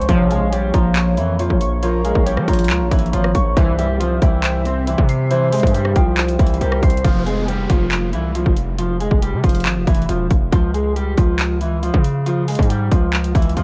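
A distorted 808-style bass sits up front in this melancholic, menacing trap cut, its heavy, saturated sine tone edged with a noise layer. Beside it, an electronic trap kit in a half-time feel brings a hard-clipped kick, metallic hi-hats, handclaps and rim clicks. An electric guitar at the edge of break-up carries the dark, fingered melody from the start to the very end, softened by a low-pass filter and spring reverb. Through the first half, warbly lo-fi synth keys add nostalgic, decaying notes with chorus, and a very quiet analog pad holds deep, moody sustained chords. A breathy flute-like synth lead with vibrato and tape echo drifts in the background as a second line, while a juicy, detuned polysynth with resonant filter sweeps and phaser hits brief stabs on the chord changes. Around 7.0 seconds the keys, pad and lead drop away and a background downlifter runs until 10.5 seconds, leaving guitar, bass and drums in a dry, close sound.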